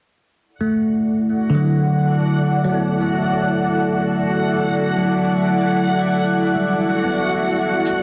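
Heavy in wet recital hall reverb and pressed into a dense, heavily limited modern master, this short future garage cut from a longer piece feels nocturnal and melancholic. A bell-like tine electric piano plays accompaniment from 0.6 seconds, bright and clean between D3 and B3, shaded by phaser, a low-pass filter and tape echo. A reversed, dreamy swelling texture drifts in alongside it, detuned and granular with a slow attack and long release. At 1.0 seconds a cloudy granular pad joins up front, holding blurred, evolving chords over an Em11 harmony. The groove swings on the sixteenths, and the drum part is a muffled, pitched-down shaker at 7.9 seconds, sampler-style and tape-softened.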